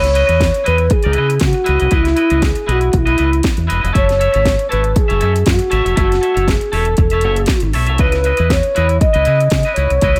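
A dry mix carries this danceable, glamorous disco passage, cut from a longer piece, where a house drum kit with a punchy kick, cracking snare and metallic hats sits up front beside a fingered electric bass pushed through an envelope filter. Over them, a pure, mellow alto flute plays the tongued, straight-toned melody from a distance, while a bright, twangy electric guitar with a vibrato effect adds clean, picked, scooped accompaniment. The harmony moves from C#m9 to F#m7 at 3.9 seconds and returns to C#m9 at 8.0 seconds.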